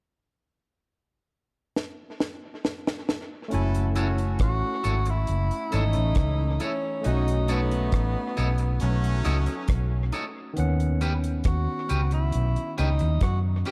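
Dark, small-room production with light reverb and some lossy compression artefacts frames this longing, bittersweet lovers rock reggae excerpt at 68 BPM in F# dorian, opening with a drum fill at 1.8 seconds from a dry, up-front kit with a tight kick, high-tuned snare and dub echo. At 3.5 seconds a round, foam-muted fingered bass, a barky tine electric piano through a combo amp and a punchy, loose horn section with vibrato and dub echo arrive over chords moving from F#m7 to B9 to D#m7b13, the horns dropping out at 10.1 seconds. Twangy, slightly broken-up guitar stabs and a breathy tenor saxophone melody with tape echo carry on until the cut.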